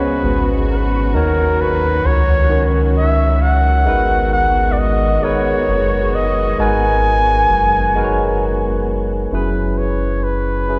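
In a slow six-eight R&B pulse at 44 BPM in G# minor, this yearning, sultry excerpt sets an up-front solo flugelhorn melody, jazz-styled with vibrato and scooped notes, over a barky, clean tine electric piano through a combo amp and a rubbery, hollow, bouncy square bass. Dark, woody studio strings hold lush bowed chords until 9.3 seconds, when the harmony moves from G#m9 to F#9sus4. A wet cathedral reverb gives the recording the long, spacious wash of a church or concert hall.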